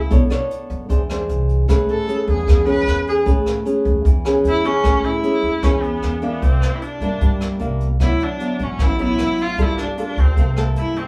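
A straight 4/4 bossa nova groove at 152 BPM in A major opens this breezy, sophisticated excerpt, with brushes on a natural-sounding kit marking hi-hat and rim clicks over a boomy kick while a woody, thumpy upright bass plucks its gut strings underneath. A bright, full-bodied nylon-string guitar is fingerpicked up front through jazzy changes such as Bm9, Eaug7 and Amaj9, and a rich, bowed viola carries the melody with smooth, even vibrato, taking a solo through the first 4.8 seconds. The band sounds as if playing live together in a small room with moderate reverb, and the clip ends at 11.1 seconds, cut from a longer piece.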